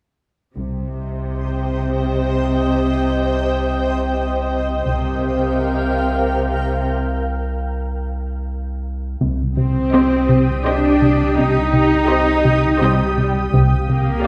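A lush, up-front cello section carries the bass line through this mysterious, tense suspense-film cue in 3/4, resting on a thick, saturated sub-bass drone and a blurred, detuned granular cloud pad of sustained chords. Very quiet bowed double basses add brief touches before a break from 7.0 s, after which a glossy, retro chorused synth bass riff enters at 9.2 s. A faint vibrato violin melody and background violas then join over the Cm and Gm7/C chords, all heard from further back in a scoring-stage room.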